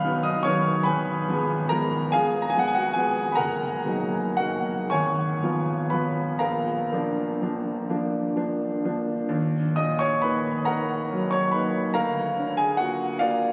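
Wistful and yearning, this excerpt from a romantic nocturne for solo piano unfolds in Eb minor at a slow, rubato pace of 36 to 49 dotted-quarter beats per minute in 12/8. A clear concert grand piano carries the whole 13.5 seconds alone, ranging from Gb1 up to F6, with a deep bass, a smooth, vintage tone and an up-front presence. The harmony drifts from B through diminished and minor colours to Bb around 6.4 seconds, before a second section opens on Ebm at 9.3 seconds and comes to rest on Bb/D. The sound sits in a cathedral-like reverb with a long 5.5-second tail, captured on a phone in the room and then given added reverb and compression. The tuning sits at A4 = 441 Hz, slightly above standard pitch.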